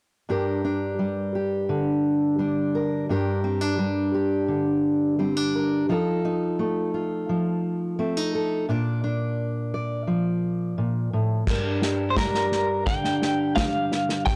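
A fingerpicked steel-string acoustic guitar opens this yearning indie folk excerpt at 0.3 seconds, its fresh strings and faint finger squeak sitting up front in a dry, gritty recording with a touch of small-room reverb. At 11.5 seconds an unplugged drum kit played with bundle sticks arrives, carrying a punchy kick, dark cymbals and a vintage sampler grit. At 12.1 seconds a clean, compressed electric guitar adds a stirring melody colored by tremolo and tape echo.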